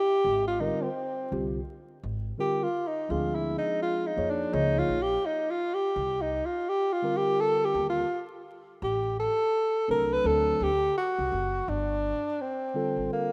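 A lightly swung 84 BPM groove in 4/4 sets up this cool, smoky jazz-hop fragment in G minor, cut from a longer piece. A breathy tenor saxophone sits up front and solos from 0.0 to 11.7 seconds with vibrato, subtone and scooped notes and a smooth top, over woody pizzicato upright bass and a mellow, clean tine electric piano moving through rich chords such as Abmaj9, Am13 and D7 before settling on G7sus2 at 11.7 seconds. A lush hall reverb and vinyl crackle give the rough home-demo mix a late-night haze.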